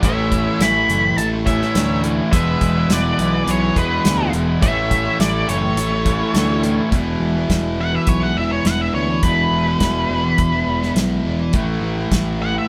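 A dark, up-front octave-fuzz lead guitar carries the melody of this sunny, driving classic rock excerpt and takes a solo from 6.9 s, backed by a bright garage guitar and a second overdriven electric guitar playing riffs, a round, punchy picked bass, and a dry, damped 70s drum kit with a fat snare and tight kick, while a biting lead guitar adds a second line in the background and a very quiet double-tracked crunchy guitar and a shouting tonewheel organ through a slow rotary speaker fill out the opening before stopping at 6.9 s, all heard as a band playing live in one room with moderate reverb.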